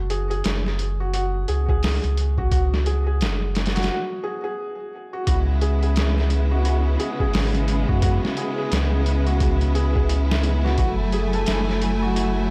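A swung 87 BPM trip hop groove in F# minor sets a cinematic, smoky mood, with muffled, pitched-down sampler drums and a round sine sub bass under soft felt-muted piano arpeggios trailed by tape echo, moving through a break at 3.9 seconds before bright, biting bowed strings with 12-bit grit enter at 5.3 seconds over C#m7 and resolve to F#m9 in a dreamy plate reverb.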